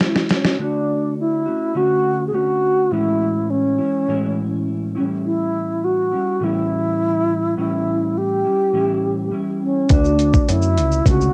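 Hazy and laid-back, this short cut of indie bedroom pop moves at 103 BPM in a straight 4/4, centred on A major. A wooden-headed alto flute carries the melody up front, its airy, close-miked tone touched with vibrato, a soft attack and an unsteady edge, dressed in subtle chorus and cassette-tape colour. Beneath it, a dark, clean electric guitar played with the fingers holds the accompaniment throughout, shimmering with analog chorus and a vibrato effect as the chords drift from a rootless Amaj7 through Dmaj7 and A7. A dusty, sampler-style drum kit with a thumpy kick, a medium-tuned snare, hi-hat and shaker opens with a gritty, compressed fill and then returns at 9.9 s, when a chorused synth bass also arrives with a glossy, retro pulse-and-sawtooth tone and transformer saturation. The whole piece sits in a modest studio reverb with the soft wear of a home cassette recording.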